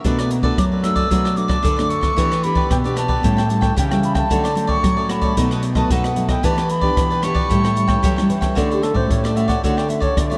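A bright, reedy baroque flute with soft-attack vibrato floats distantly through diffuse ambient delay from 0.6 seconds and takes a solo at 8.6 seconds in this joyful, playful samba and choro excerpt at 113 BPM in D major, set over a crisp picked cavaquinho, a dark thumb-plucked classical nylon-string guitar, a second nylon-string guitar on bass, and an up-front, small-room jazz kit with boomy kick, hi-hat and rim clicks, all bathed in a dreamy, reverb-soaked haze.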